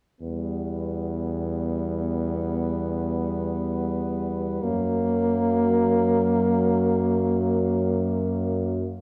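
A mellow French horn sits up front in this brief excerpt of Balkan brass band music, sounding an accompaniment line with light vibrato in a classical manner. Beneath it, a soft-attacked, close-miked euphonium adds its own mellow, gently vibrating voice in a lower register. A clear tuba, also placed forward, carries the bass throughout, all three parts sounding together from 0.2 s to 8.9 s. Played in free time, the passage moves from E minor to F# at 4.6 s, giving it a restless, virtuosic air. A recital-hall reverb surrounds the ensemble with the resonant bloom of a church or concert hall, and the fragment is cut from a longer piece.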